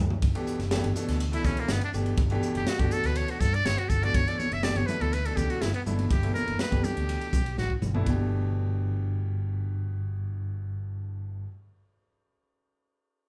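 Cut from a longer piece and played live in one room, this electric jazz fusion recording sits in a wet, large studio reverb, with a slick, soaring mood at 122 BPM in G lydian over a Gmaj9 chord. A buzzy, thin trumpet with a metal mute and light vibrato solos up front from 0.2 seconds, over a growly, amped fretless bass, a crisp drum kit with bright cymbals, a high-tuned snare and a punchy kick, and a polished concert grand piano with deep bass; thick-skinned congas with soft hands enter at 4.4 seconds in the background. After a drum fill at 7.6 seconds, the drums, trumpet and congas stop, and the bass and piano carry on under a Gadd9 chord.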